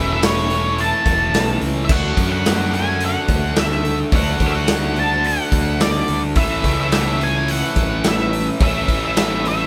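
Driving and sunny, this classic rock excerpt moves at 107 BPM in a straight 4/4, with the band playing live together in one room under a touch of light reverb. A biting, double-tracked overdriven guitar picks an up-front riff over A/E, D and A chords, while a dark octave-fuzz lead guitar carries the melody up high. Beneath them, a fuzzy fingered electric bass growls in the low register, and a big, natural acoustic drum kit with a tight kick, medium-tuned snare, hi-hat and crash joins at 0.2 seconds.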